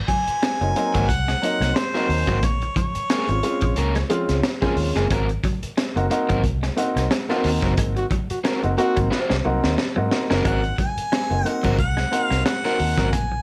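A mellow, roomy harmonica carries the melody over a cool 90 BPM funk groove with a light 16th-note swing, dropping out after 4.1 seconds and returning at 10.5 seconds, while a gritty, saturated breakbeat kit with a high-tuned snare and tight kick sits up front beside a round, punchy muted fingered bass. A woody upright piano plays dark stabs, a crunchy overdriven guitar adds picked accompaniment, and a clean, compressed electric guitar riff stays in the background as the chords move between Ab9 and Bbm7. During the band accent, just before the drum fill, a clear trombone with light vibrato briefly takes a second line at 8.0 seconds, all in this short, lightly reverberant funk excerpt.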